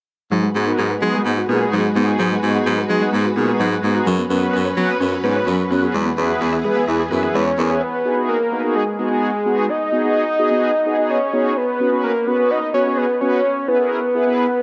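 The excerpt opens at 0.3 seconds with a shimmering string machine playing sustained violin chords in the background, beside a juicy, squelchy blip pluck whose arpeggios carry chorus and tape echo. A clear baritone saxophone with vibrato and a smooth top carries the bass line up front. At 0.6 seconds a brassy, round synth brass enters with a sustained accompaniment and a filter sweep. This is a melancholic, cool pop piece at 128 BPM in 4/4 and G# minor, moving through G#m7, F#sus4 and E. At 7.3 seconds a fat, nasal analog lead enters with the melody, with vibrato and a sub octave. Shortly after, the strings, pluck and saxophone drop out, and the synth brass continues beneath it. A wet plate reverb and heavy echo give the whole mix a spacious, drifting sound.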